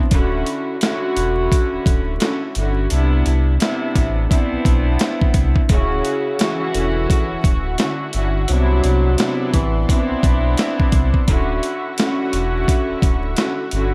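Boom-bap hip-hop with a nostalgic, confident mood, moving at an unhurried swung pace over an alternation of Dmaj9 and Cmaj9 chords, cut from a longer piece. A clear, floating studio string section plays bowed accompaniment up front from the start, colored by cassette tape character and filtering, while a deep sine-and-triangle sub bass with an added octave holds the low end with full, sustained notes. A gritty, compressed sampler-style drum kit sits up front with a thumpy kick, a medium-tuned snare and hi-hat, its sound re-recorded in a large room. At 5.7 seconds a breathy, mellow tenor saxophone enters with jazz-style phrases, light vibrato and scooped notes, sounding distant and roomy through tape echo until 10.1 seconds. A lush, detuned unison pad of sawtooth and square waves arrives at the same moment, sitting bright but in the background with chorus and slow-attack sustained chords through to the end. 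Vinyl crackle runs over the dry mix, lending a dusty, crate-dug atmosphere.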